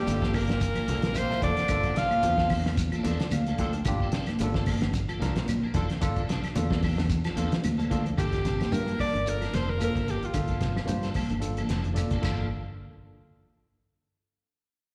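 A bright alto saxophone with slapback echo leads a veiled, bucket-muted trombone section and a raspy tenor saxophone to open this funky, hypnotic afrobeat excerpt from a live gig, as a barky, overdriven tine electric piano with its own fills, a clean electric guitar playing arpeggios, a round, punchy fingered bass, a thuddy, cloth-damped drum kit, high-tuned congas, a grainy shekere, woody claves and a twangy electric guitar at the edge of break-up adding chorused stabs settle into a Gm9 groove, with the alto returning at 8.2 seconds after a drum fill.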